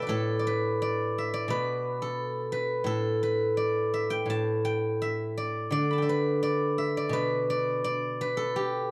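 A steel-string zither opens the recording alone, its ringing, silvery tone set up front in a dry, close sound with light reverb. This short passage of Chinese traditional solo plucked-string music lasts 8.9 seconds and is cut from a longer piece. The mood is serene and flowing, with a rubato feel around 86 BPM in 2/4. Played with fingerpicks, the acoustic zither ranges from A2 to B5. The intimate, 1970s-style studio sound keeps every plucked note vivid and near.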